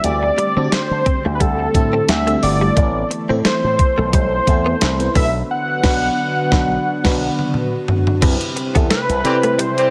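This dramatic, nostalgic 1980s-style pop fragment opens with a thick, detuned unison lead carrying the melody up front over a clean 12-bit drum machine with a thumpy kick and fat snare, a bright slap bass through an envelope filter, a lush, dreamy FM electric piano with a soft pad layer, and a swirling phased analog pad sustaining chords in the background, while a clean, direct-recorded electric guitar riff with ensemble chorus and delay slips in at 0.2 seconds. The band hits accents from 5.5 seconds, with the drums adding a fill from 6.9 seconds, and a tight, vintage horn section with light vibrato adds delayed stabs at 9.2 seconds, all in a light reverb with a gentle swing.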